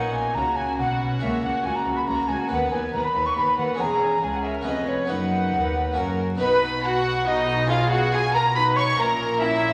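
A straight triple metre carries this festive, brilliant passage from a baroque-style concerto movement, cut from a longer piece and moving into a new section at 6.4 seconds. A mellow, hollow concert flute leads the melody with airy, tongued vibrato, shadowed at the same height by a chamber violin section bowing in period style on gut strings with light vibrato. Beneath them a second violin section, close and reedy in a studio setting, plays a second line. Meanwhile a closely miked Italian-style harpsichord with octave strings adds dry, plucked accompaniment alongside a smooth-topped viola section set in the background. A nasal cello section and a rich double bass section supply the bass, while a wet recital hall reverb surrounds the ensemble and vinyl crackle runs under the sound.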